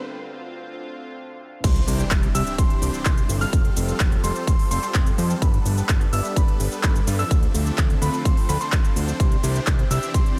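A punchy, up-front electronic kick drives this uplifting, euphoric slice of festival progressive house, landing with the drop at 1.6 seconds alongside a big-room dance kit of crisp hats, handclaps, shaker and crash, both carrying a tape-warm character re-recorded in a large room. Before that, a lush, thick unison pad holds sustained chords alone in the background through the opening break and build-up, its chorused, detuned tone pumping against the sidechain. At the drop, huge detuned supersaw chords take up a phaser-tinged riff with digital delay, while a fat, nasal analog bass underpins the harmony and a bright grand piano spins brilliant, short-sustained arpeggios high above with echoes trailing behind. A sub drop rumbles in the background as an impact from 1.6 to 3.5 seconds, and the harmony moves through Dm7, Cadd9, Fadd9 and Gadd9 before cycling back. The sound is big and polished, set in digital ambience, with the pumping pulse giving the melodic parts a breathing, euphoric lift.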